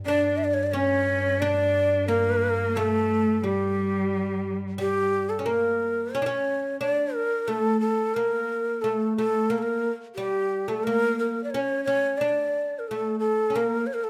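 A breathy, up-front ney with a slapback echo carries the melody through this longing, hypnotic Arabic excerpt, over a bright, woody oud second line and a rich bowed cello that plays alongside it until 5.1 seconds, while a soft, floating double bass drone holds beneath until 5.5 seconds, all captured with close, detailed microphones and light reverb.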